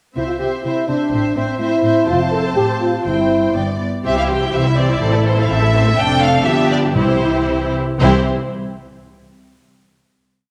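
Graceful and cheerful, this complete classical-period movement for symphony orchestra moves in a quick two-beat metre with a flexible, rubato feel. A rich, smooth violin section carries the melody from a slightly distant position, while a second violin section with a soft attack and expressive phrasing adds a rocking two-note figure and sustained chords beneath it. Lush violas sit in the background with repeated notes and held harmonies. Close-sounding cellos supply sustained bass with passing notes and a counter-melody, doubled by focused double basses that mix bowed lines with pizzicato notes on the beats. An up-front French horn section with light vibrato holds sustained chords through the opening phrase, and the tune is then restated as the music slows between 5.5 and 8.0 seconds. Timpani with calf heads enter at 7.0 seconds for single strokes on bass notes leading into the final chord, and the orchestra is heard in the generous reverb of a scoring stage.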